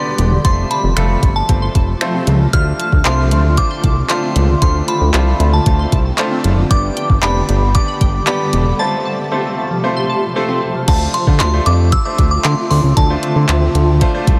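A straight 4/4 pulse at 115 BPM drives this confident dance-pop excerpt in D dorian, set from 0.2 s by a smooth, electronic R&B kit of soft kick, tape-warm hi-hat, finger snaps, handclaps and crash cymbal, joined up front by a fat, saturated analog bass with a detuned, filter-swept tone that pumps under sidechain compression. Above them a glassy, warbling FM synth bell sings the high melody through chorus, tremolo and tape echo, its vintage, decaying notes falling away at 13.5 s. A clear, polished concert grand piano supplies accompaniment with subtle chorus and the same sidechain pumping, while a blurred, evolving granular cloud pad holds sustained chords in the background, thickened by lush chorus and its own built-in reverb. A crystalline, digital wavetable pluck spins arpeggios across a broad range with chorus and tape echo until 10.9 s, when the harmony moves from its cycle of F, Dm7, G and F back to Dm7 for a new section. 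The whole track is soaked in a huge ambient reverb that gives it a dreamy, driving glow.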